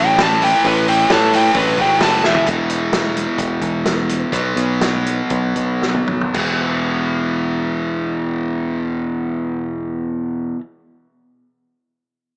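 Confident and swaggering, this classic rock excerpt runs at 112-132 BPM, opening with a compressed fuzz lead guitar solo over an up-front cranked stack guitar riff, a tight distorted guitar riff in the background and growly picked electric bass, joined at 0.2 s by a vintage drum kit with dark cymbals and a punchy kick. A drum fill lands at 2.2 s, and from 2.5 s the lead and tight guitars drop away while the tempo slows, with the stack guitar, bass and drums carrying the riff through chords on E5 and B5. The drums stop at 6.5 s, leaving the bright, overdriven stack guitar and bass to finish in a small room with light reverb and a small-speaker sound.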